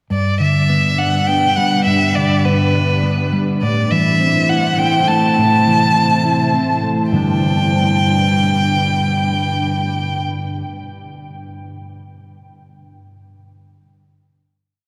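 A straight 103 BPM pulse in 3/4 carries this short, soaring and euphoric post-rock piece in G major, moving from G to A minor and settling on a held G chord at 7.1 s. A dark, clean electric guitar with phaser and compression picks fingered arpeggios up front, while a rich, expressive violin sings a motif-based melody with vibrato, soft bowed attacks and gliding portamento. From 0.7 s a cloudy, detuned granular pad adds slow-blooming sustained chords, and the whole performance sits in the long, wet tail of a cathedral-like hall.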